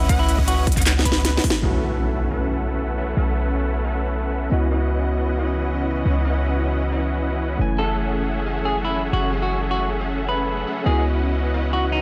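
Dreamy and emotional, this future bass excerpt moves at 156 BPM in a half-time feel in C# minor, cut from a longer piece. It opens on a drop where huge, lush supersaw chords, a deep, boomy 808-style bass and a very quiet, detuned unison pluck playing arpeggios all sound together, joined by a punchy layered electronic kick and a trap kit with a sharp snare, crisp hats and handclaps. A drum fill and a band accent close that opening: the kick drops out at 1.5 seconds and the kit stops at 1.6 seconds as an electronic impact lands in the background. From there the supersaw chords and bass carry on under a bright, barky tine electric piano with dub echo and a dark, veiled con sordino string section sustaining chords in the background. A dark, scooped semi-hollow guitar plays the melody with digital delay, heard briefly at the start and returning at 7.8 seconds, while the harmony moves through C#m11, B9sus4 and F#m9. 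Sidechain pumping breathes through the supersaw chords, bass, electric piano, strings and guitar, and light reverb and digital ambience surround the mix.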